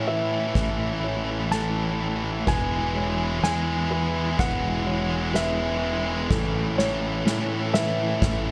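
In a moderate studio reverb, this soaring, hopeful post-rock excerpt builds as a dark, compressed lap steel slide melody with tape echo rides over a bright, overdriven stack guitar riff and a round fuzz bass, while a soft-mallet drum kit with boomy kick and dark cymbals enters at 0.6 s and fills throughout, alongside a very quiet mellow electric guitar arpeggio, a felt-muted upright piano's intimate, echoed arpeggios in the background and a very quiet, earthy chamber string section holding bowed chords.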